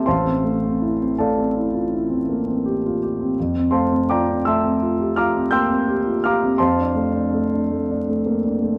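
A concert grand piano carries this brief impressionist fragment alone, sitting up front with an intimate, natural tone, deep bass and long sustain, its action noise audible beneath the notes. Cut from a longer classical piece, it drifts in a dreamy, hazy mood at a slow 55 beats per minute in a lilting 9/8, the pulse loosened by rubato. The harmony rests on Am7 before settling onto Fmaj9 at 3.4 seconds, colouring F major with added tones as the playing spans from deep in the bass to high in the treble. A moderate reverb lends the sound the air of a scoring stage, while a dark production and vinyl crackle add a veil of age to the 8.8-second excerpt.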